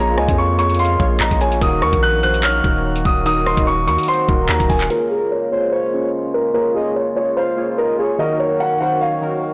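A dark, ominous drill excerpt opens on a boxy, up-front grand piano carrying the melody in a high register, over warbling, nostalgic lo-fi synth keys with chorus, a reedy, close-miked accordion holding sustained chords, and a deep, sine-toned 808-style bass with long decaying notes. Almost at once a produced electronic drill kit enters in a half-time feel, with a knocking kick, metallic hi-hats, handclaps and rim clicks sitting up front, while a soft, round octave-layered synth lead with vibrato, chorus and delay traces a second line. The harmony moves between Bbm7 and Ebm, and the whole mix sounds blown-out and overdriven under a light reverb. At 4.9 seconds the bass drops away, the drums stop at 5.0 seconds, and a filter sweep carries the remaining piano, keys, accordion and lead through the second section to the cut.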